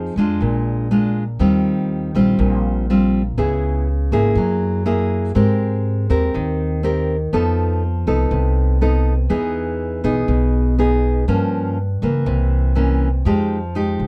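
A dark, lightly reverberant production frames this short romantic, breezy bossa nova excerpt, cut from a longer piece. Up front, a full-bodied, fingerpicked classical nylon-string guitar carries the accompaniment, its finger squeaks audible as it moves through lush extended chords such as Eb69, Abmaj9, F7#11 and C7b9 before settling on Fm9. Beneath it, a woody, growly pizzicato upright bass with steel strings holds the low end from start to finish.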